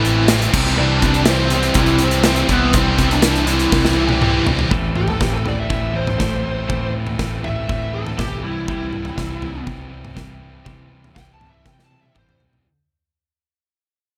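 Light reverb surrounds this dark, cathartic cut from a quiet-loud alternative rock piece, where an up-front acoustic drum kit with bright cymbals and a punchy kick, a growly overdriven bass, a thick fuzz guitar, a scooped high-gain guitar and a double-tracked overdriven guitar in the background drive riffs over Am and C, while a dark, distorted bluesy lead with digital delay carries the melody; the background guitar drops out just before the scooped guitar stops at 4.7 seconds, a very quiet, clean, compressed twelve-string electric enters with arpeggios, the lead turns to a solo through a fade-out, and drum fills close each section.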